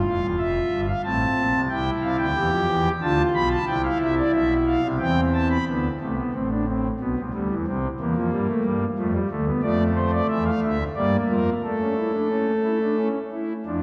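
A pipe organ on its foundation stops carries this serious, contemplative baroque-style fugue in three parts, played solo and sitting up front in the mix. Its tone is thick and romantically voiced, spanning from a deep E1 up to B5 across the 13.8-second fragment, which is cut from a longer piece. The music moves at 90 BPM in a straight 3/4, opening on a single unharmonized line before the harmony settles around A minor, C and a diminished chord over D. At 5.7 seconds a second section begins, shifting through G, a C seventh, F and D minor toward G minor and a closing A major. A wet church reverb with a long 3.8-second decay surrounds the organ, lending the performance a spacious atmosphere.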